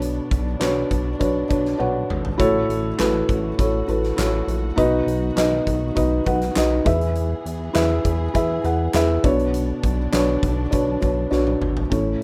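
Anthemic and warm, this piano-driven pop excerpt moves at 101 BPM in a straight 4/4, with a felt-muted upright piano up front, its soft, dark tone carrying audible action noise as it plays the accompaniment over chords that move from Bmadd9 through A6, B and E before returning to Bmadd9. Beneath it, a glossy, retro chorused synth bass with a fast-attack filter pluck holds the low end, while a lush bowed string section with vibrato and portamento sustains chords in the background. A huge arena drum kit, natural and big-roomed with a fat snare, punchy kick, handclaps, hi-hat and toms, adds a fill at 1.8 s that overlaps a brief piano fill beginning at 1.5 s, and another at 11.3 s, all within a moderate reverb and a rough home-demo mix.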